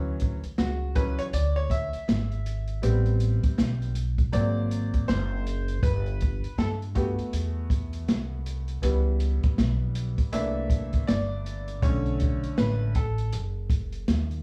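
This jazz-hop cut, taken from a longer piece, has a cool and warm mood, with a swing on the sixteenths. A clear upright piano leads with a solo over the accompaniment, its woody, intimate tone carrying audible action noise and a plate reverb before it drops out at 13.3 seconds. Beneath it, a pizzicato upright bass with steel strings sits up front, sounding woody and warm in a low register. An open jazz drum kit enters at 0.2 seconds with hi-hat, a boomy kick and a medium-tuned snare, its dark, smooth character and rolled-off top recorded in a small room. The harmony drifts through rich jazz chords such as Dmaj9, G#9, C#m7b5 and C13 before settling on Bm7, all in a light studio reverb.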